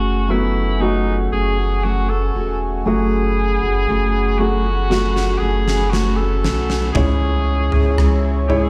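This sounds like a live gig heard through a venue's PA, with a club reverb giving the short cut from a longer piece a roomy, slightly distant air. It is a melancholic, heartbroken pop ballad in 4/4 at a slow, straight 58 BPM, resting on F#madd9 before moving to C#m at 7.0 seconds. A bright, vintage-toned alto saxophone carries the melody with light vibrato and a slapback echo. Beneath it, a felt-muted upright piano plays soft, intimate accompaniment, and a fingerpicked dreadnought steel-string guitar adds full-bodied arpeggios with its own slapback delay. A deep, saturated sub bass sits up front with a thick, fast-attacking tone, while an evolving, detuned sawtooth pad with chorus, phaser and a filter swell hangs in the background. At 4.9 seconds a huge arena drum kit enters with a fill that runs to 7.0 seconds, its punchy kick, fat snare, rim click and toms ringing in a hall-like space.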